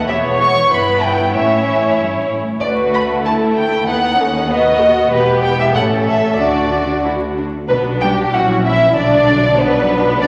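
In a straight 2/4 pulse, this brief, graceful and cheerful classical-period movement for muted string orchestra moves quickly, its veiled chamber violin section carrying the melody up front with soft attack and vibrato while a lush symphonic violin section plays a close second line. A dark, muted viola section fills in the accompaniment, with the cello section sitting in the background and a rich double bass section anchoring the bass beneath. The strings sound in a concert hall reverb under a layer of vinyl crackle, and the harmony turns toward B minor in a second section from 7.7 seconds.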